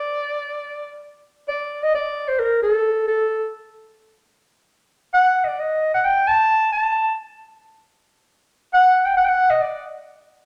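A breathy, mellow solo clarinet sits up front from the start, singing a soulful, bittersweet klezmer line in D phrygian dominant between A4 and A5 with vibrato, scooped notes and a smooth, jazz-inflected top. The straight 4/4 pulse begins at 132 BPM and speeds up throughout this fragment of a longer piece, and the clarinet stops at 9.8 seconds into the wet bloom of a large studio reverb.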